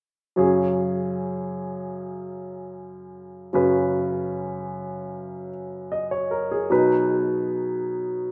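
A tender, emotional pop excerpt at 76 BPM in a straight 4/4, carried by a lone baby grand piano playing accompaniment from 0.4 to 8.3 seconds. The piano sounds clear, polished and up front, spanning F#2 to D#5 as it moves from an F#sus2 chord to B at 6.7 seconds. A wet plate reverb with a 2.6-second tail surrounds it, and the rough home-demo mix has a dulled top end.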